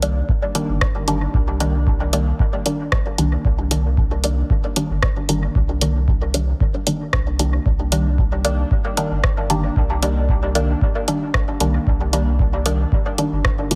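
A muted, detuned sawtooth chord stab with a filter pluck sits up front on a Cm7, coloured by chorus, phaser, dub echo and sidechain pumping, over a round sine sub bass that also pumps, dark hi-hats and rim clicks from a layered deep house kit trailed by dub echo, and a tape-warm analog kick that enters at 0.3 s, giving this meditative, hazy dub techno passage in C minor at 114 BPM, lightly swung and tuned to A4 = 436 Hz, a light reverb and a heavily compressed, radio-like sound.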